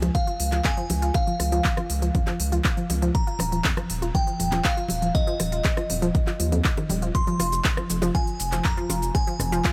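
A deep, tape-warm electronic kick sits up front in this dreamy, emotional progressive house excerpt at 120 BPM, alongside a thick, saturated sub bass and a lush, detuned sawtooth unison pluck playing arpeggios under a filter sweep with tape echo, both pumping to the sidechain, while a deep house kit of handclaps, smooth hats, rim click and shaker, dry hard-handed bongos and congas in the background, and a glassy, warbling FM bell melody with chorus, tremolo and dub echo move over Db and Fm chords in a dry room.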